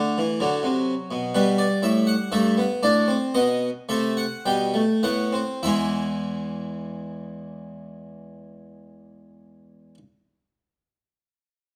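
A classical, baroque-style fugue in three parts, this short excerpt is serious and driving in mood, set in 4/4 with a straight feel at a stately 49-65 BPM. A solo harpsichord in the Flemish style carries all three voices, its plucked tone full and brilliant from three sets of strings, spanning E2 to G5 and placed up front. Over the first 5.6 seconds the tempo slows as the harmony moves from F#m7b5 through Em to B7, building tension that settles onto E major when the second section begins. The instrument sits in a moderately large studio space whose reverb lends the plucked notes a gentle halo. Tuned slightly below modern pitch at A4 = 439 Hz, the passage is cut from a longer piece, and the harpsichord sounds until 10.0 seconds.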